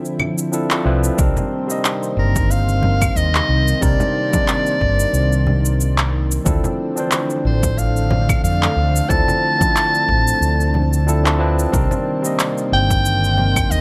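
A lightly swung 91 BPM groove of overdriven electronic shaker, claves and handclaps, joined by background congas and a punchy, distorted electronic kick at 1.2 s, carries this relaxed sunset chillout piece in C dorian, where a dark, round fretless bass sits up front beneath a barky tine electric piano with tape echo and a thick, detuned, warbling pad with chorus, while a bright soprano saxophone with vibrato takes the solo melody from 2.2 s over Dm9 and Cm9 chords in light reverb.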